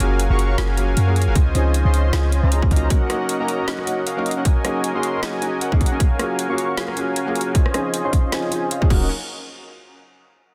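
A soft supersaw riff with a detuned, evolving shimmer opens this dreamy, lush future bass clip at 155 BPM in a swung half-time feel, pumping against a felt-muted upright piano whose mellow chords carry audible action noise, both trailed by dub echo while a filter sweep moves through the synth. A deep, boomy 808-style bass with tube saturation sits up front until 2.9 seconds, returning briefly at 8.9. A trap kit adds a woody, softly clipped snare and metallic hats, with a hard-clipped electronic kick entering at 1.4 seconds, all under light reverb and a dense, heavily limited master as the harmony drifts through Gbmaj9, Dbmaj9, Ebm7 and Ab9sus4.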